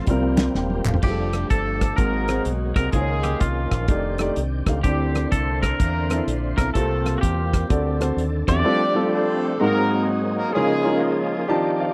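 Uptempo gospel with a jubilant, uplifting swing, where a soft, distant horn section carries the melody over gritty overdriven organ chords turning through a slow rotary speaker and chorus vibrato in the background, an up-front grand piano with short sustain, round dub-deep fingered bass and a dark, tight soul drum kit that drop out at 8.6 seconds, a brief burst of crisp group handclaps near the start, and a twangy, scooped electric guitar line bathed in spring reverb from 1.0 to 9.4 seconds, all captured in a dry, close 1970s-style studio sound before a piano fill closes this cut from a longer piece.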